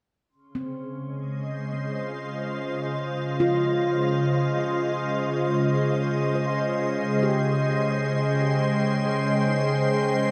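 Drenched in a long plate reverb and heavy echo, this peaceful, warm ambient excerpt floats on a single Dbmaj9 chord. A pure, organ-like pad sits bright and up front from 0.7 s, its detuned sine and triangle tones thickened by ensemble chorus and a slow attack, while a glassy, ethereal glass harmonica fades in from 0.3 s in the background. A very quiet handpan adds mellow, ringing arpeggios played with soft fingertips, giving the piece a meditative, airy glow.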